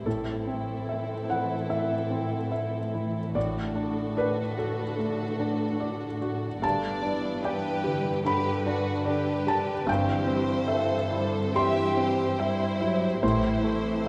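Cinematic, emotional film score for orchestra in G major, tender and hopeful, moving at a rubato 73 BPM through Am, D/A, G and C/G in this short section cut from a longer piece. A soft, felt-muted upright piano sits up front with audible action noise, while a ringing, thumb-plucked concert harp plays arpeggios in the background and a rich violin section carries a lush, vibrato-laden second line. Beneath them, a dark, woody viola section, an expressive, warm cello section and a smooth, distant double bass section fill out the low strings, all held together by a moderate scoring-stage reverb.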